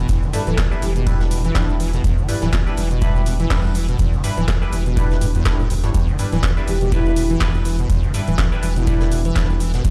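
A squelchy, resonant acid bass riff with tube saturation and chorus pumps against a thick sine sub bass and a deep, tape-warm electronic kick in this raw, trippy acid house excerpt, while an overdriven analog drum machine rattles out cabasa, handclaps, hi-hat and ride, very quiet jazz brushes add snare, hi-hat and shaker, nasal band-passed chord stabs drift through phaser and dub echo over Em7, and a breathy, flute-like synth lead with vibrato floats in at 0.3 seconds and again from 6.7 seconds, all heard as if on a big sound system in a bare, reverberant room.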